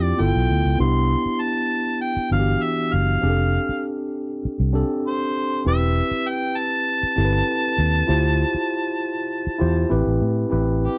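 A mellow harmonica carries the melody up front, its punchy, scooped notes shaded with light vibrato in a vintage pop solo style. This short cut from a longer piece is lush 1970s-style soul in a straight 4/4, with a cinematic, silky mood. A tine electric piano plays clean accompaniment through its built-in speakers, giving the harmony a warm cushion. Underneath, a foam-muted fingered electric bass sounds dark, round and amped, sitting prominently in the mix. The chords drift from G13 through Cmaj7, F69, Am7/E and Dm11 before settling on Am9 near 9.9 seconds. The dry, close studio sound and small room ambience keep every part intimate.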